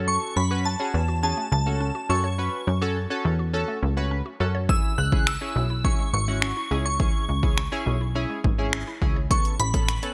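Dance-pop with a euphoric, carefree mood and a bright 1980s-style digital sheen, moving from F#m to C#m and then Aadd9 in a straight 4/4 under light reverb. A shimmering, dreamy FM bell carries the melody up front with ensemble chorus and delay, over glossy chorused retro synth keys, a woody mallet-like synth pluck playing arpeggios in the background, and a punchy, funky analog bass, all three pumping with sidechain. At 4.7 seconds a deep house drum kit enters up front with finger snaps, hi-hat and a punchy kick, treated with gated reverb.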